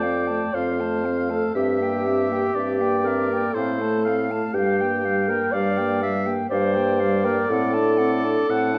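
A serene wind quintet opens together in a slow, romantic classical movement in F major at 60 BPM in a rubato 3/4, where a pure, softly attacked silver flute sings the melody with vibrato over a clear oboe second line, a dark French horn and distant, roomy clarinet supply accompaniment, and a mellow, up-front bassoon anchors the bass, all bathed in a moderate recital hall reverb as the harmony moves from F through C7/G and Gm7 to D7/A in this brief section cut from a longer piece.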